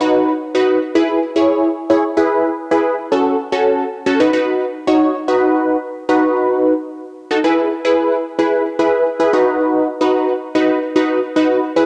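The recording opens straight away on a solo polysynth playing funky comping chords, a short pop fragment cut from a longer piece with a nostalgic, bright mood in a straight 4/4 feel. The synth sound is punchy and detuned, built from sawtooth and pulse waves with a fast attack, sustained notes and a filter sweep with a moving notch, sitting up front in the mix. Chorus, cassette tape colouring and analog delay shape the part as it moves through chords from B to E, F#m and Badd9, then returns to B and E before settling on B. The phrasing falls into three short sections, with the second beginning at 5.3 seconds and the third at 7.4 seconds, and the part plays alone until 11.9 seconds. A wet spring reverb and digital ambience surround it, and the home cassette recording lends a homemade character.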